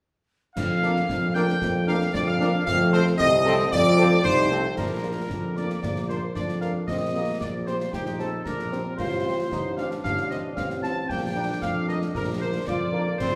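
A military-style march for wind band in 2/4 at 114 BPM in Bb major, proud and festive in mood, heard as a short cut from a longer piece. A clear, tight trumpet section carries the melody, while a dark euphonium with a soft attack adds a second line only until about 4.5 seconds, and an airy, tongued piccolo and a woodwind section with light vibrato fill in further lines in the background. The tuba sits up front on the bass, warm and roomy with vibrato, and the French horn section and the trombones join at 0.8 seconds, the horns with accompaniment figures and the trombones with sustained chords. Concert snare drum, clash cymbals and concert bass drum keep the march beat, with dark-sounding cymbals and a small-room character. The harmony moves from Bb over F and F7 to Bb, then through Cm7 over Bb and F over A back to Bb, with a new section arriving at 4.8 seconds. The whole band is bathed in the wet reverb of a recital hall, giving it the spacious sound of a church or concert hall.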